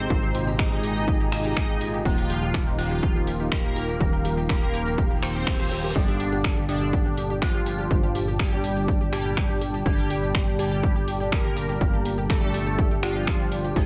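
Melodic techno at 123 BPM in G minor, melancholic and driving, where an overdriven, up-front electronic kick and an overdriven techno kit of hi-hat and finger snaps push a tight, punchy sawtooth sequencer bass with sidechain pumping, while a juicy, resonant sweep polysynth carries the melody through chorus, 12-bit sampler grit and analog delay over an eerie, inharmonic FM bell line, a lush detuned unison pluck arpeggio, a smooth, warbling analog pad, an airy breathy pad, jingly close tambourine, bold nasal synth brass stabs from 0.7 s and a reverse cymbal at 5.2 s, moving through Abadd9, Ebsus2 and Gmadd9 in this excerpt.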